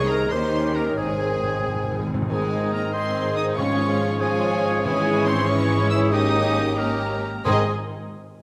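A full symphony orchestra opens at once in a spirited, graceful romantic movement in 6/8 with flexible rubato, lush vibrato violins singing the smooth melody over a second violin line, airy hollow flutes, a solo oboe, a distant clarinet and a mellow bassoon, while rich violas and close cellos join woody double basses underneath, dark soft-edged French horns and trombones hold sustained chords, distant trumpets punctuate with stabs, and hard-mallet timpani enter with a crisp fill at 1.0 seconds, all bathed in a wet concert-hall reverb.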